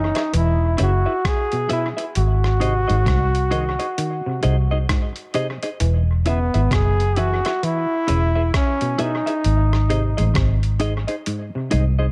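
A slow 66 BPM roots reggae groove in 4/4 with a swung sixteenth feel rides on a gritty, compressed sampler-style kit of thumpy kick, hi-hat and rim click soaked in analog delay, under a dark, round, foam-muted fingered bass sitting up front, all in an uplifting E major mood. A clean, twangy electric guitar with subtle chorus and tape echo plays accompaniment while a stringy, mellow muted clav runs phased arpeggios through a combo amp. The bright, punchy trombone carries the solo melody with light vibrato and tape echo until 10.4 seconds, in an echo-heavy mix with light reverb and digital ambience, cut from a longer piece.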